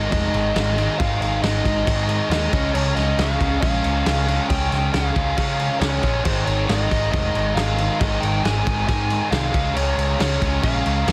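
This 11-second excerpt of angsty, cathartic quiet-loud alternative rock opens with a smooth, dark overdriven lead guitar carrying the melody over a wall of picked riffing guitars, in a straight 4/4 at 137 BPM. Beneath the lead sit three rhythm parts playing the riff: a sludgy, dark guitar and a brighter distorted one, both set in the background, plus a double-tracked cranked stack guitar that stays very quiet. A growly, punchy overdriven bass drives the low end with a bright, amped edge. The loose indie drum kit comes in at 0.1 seconds and sits up front in a studio room, its fat snare, punchy kick and crash cymbal sounding saturated and gritty with a rolled-off top. The harmony moves between Ab5 and Db chords, returning to Ab5 at 6.3 seconds, and the whole is pressed into a dense, heavily limited modern master.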